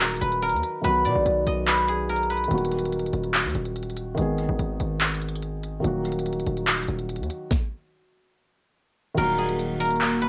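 A silvery guzheng played with fingerpicks rings up front through plate reverb, carrying the melody over a brooding, melancholic trap beat in Eb minor at 144 BPM with a half-time feel; it drops out at 4.3 seconds and returns at 9.2 seconds. Beneath it, a thick-felted upright piano with audible action noise gives soft, muted accompaniment through cassette tape. A heavy, aggressive distorted 808-style bass and an overdriven trap kit with knocking kick, sharp snare, crisp hi-hats, handclaps and crash cymbal carry on through a break, and at 9.5 seconds a warbling, detuned tape-like pad with chorus adds nostalgic lo-fi chords to this home cassette recording cut from a longer piece.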